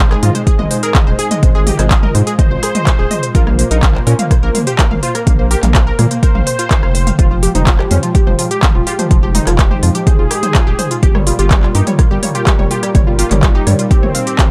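A deep, up-front electronic kick drives this hypnotic, cinematic melodic techno cut in F minor at 125 BPM, entering at 0.5 seconds beneath a tape-warm techno kit of smooth hats, handclaps, rim clicks and toms, a round, dark analog bass with sidechain pumping, a lush, punchy unison pluck playing arpeggios through delay, a thick, bold and bright detuned unison lead carrying the melody with vibrato, chorus and tape echo, and a moody analog pad holding slow-attack chords in the background over Ab, Bbsus2, Fmadd9 and Gm7b5, all in a dry mix with little reverb.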